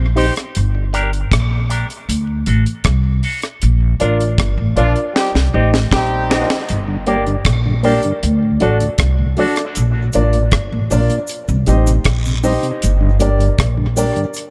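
A deep, heavy dub reggae groove in G minor at 78 BPM opens with a clear tonewheel organ, set back in the mix through a slow rotary speaker, and a woody, up-front pizzicato upright bass. A dry drum kit with a high-tuned snare and tight kick joins almost at once, along with a twangy envelope-filtered guitar steeped in dub echo. From 4.0 s a dark, boxy grand piano adds echoing stabs, and a punchy, distant horn section with octave doubling briefly plays a second line over a band accent and drum fill; after the guitar drops out, cabasa and guiro enter at 9.8 s for the closing bars under light studio reverb.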